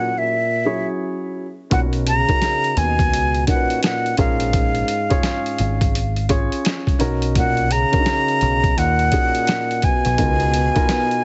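A heavily compressed, radio-like sound with light reverb frames this mellow, nocturnal jazz-hop fragment, where a breathy, close-miked flute carries the melody over a growling, raspy trombone second line and dark, short-sustained grand piano chords, before a gritty, pitched-down boom bap kit with a thumpy kick and a round, deep dub-style picked electric bass join at 1.7 seconds, the groove carrying a loose 16th-note swing.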